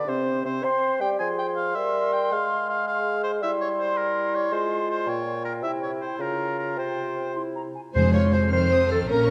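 A dark production sits in the reverb of a scoring stage, giving this restless, dramatic classical-period fragment for symphony orchestra a lingering, roomy tail. It moves in a quick six-eight with a rubato feel. For its first stretch the woodwinds carry the music: a clear, up-front oboe, a pure, hollow concert flute and a smooth-topped clarinet weave second lines above a mellow bassoon accompaniment. At 7.9 seconds most of the winds give way to the strings, though the clarinet carries on to the end. A violin section takes a high melody while another violin section in the background, a distant viola section, a focused cello section and an even double bass section fill out the harmony and bass with lush, vibrato-laden bowing. Timpani struck with hard mallets add a brief, articulate, dry accent in the background from 8.0 seconds as the harmony settles on F minor before turning to F7. The fragment breaks off at 9.3 seconds, cut from a longer movement.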